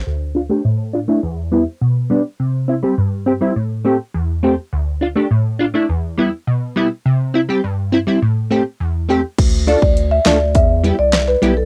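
A home cassette recording with a moderate booth ambience gives this short dancehall cut from a longer piece a hypnotic, sultry haze at 103 BPM in a straight 4/4. A digital, detuned wavetable chord stab carries most of it, its crisp attack decaying into a mellow tone as a low-pass filter sweep with a moving notch runs across the first stretch, cycling through Dm, Em, C and Am7. A deep, saturated sine sub bass sounds briefly at the very start, then returns with thick, sustained weight at 9.4 seconds. At that same point a punchy electronic pop kit arrives up front, with a fat snare, bright hats, rim clicks and a crash, layered and produced under tape colour. Just after, a woody marimba played with medium mallets on rosewood bars adds a short, vintage, band-limited melody in a high register as the passage closes on Dm and Em.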